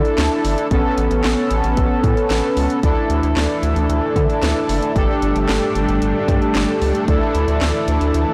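Upbeat and bright, this synth-pop excerpt moves at 113 BPM in a straight 4/4, with a bold, fat analog synth brass carrying the chords up front over a punchy house drum kit of cracking snare, handclaps, hi-hat and kick, while a round, deep analog bass joins at 0.2 seconds. At 2.8 seconds a vintage string machine in the cello register adds full, soft-attack sustained chords colored by phaser and ensemble chorus, as the harmony moves among chords such as Dsus2, Aadd9 and Gsus2. The whole recording sits in light reverb and sounds blown-out and overdriven.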